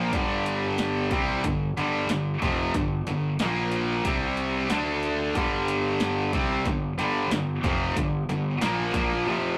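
A rough rehearsal-room recording with tube saturation and moderate reverb carries this aggressive, heavy hard rock excerpt at 92 BPM in G minor, where an up-front, bright high-gain distorted guitar and an overdriven electric guitar set in the background pick a riff over Gm, Bb5, C5 and D5, underpinned by a growly fuzz fingered electric bass and a punchy, tape-warm analog drum machine on kick, snare and hi-hat that enters at 0.1 s, with bass and drums stopping at 9.2 s.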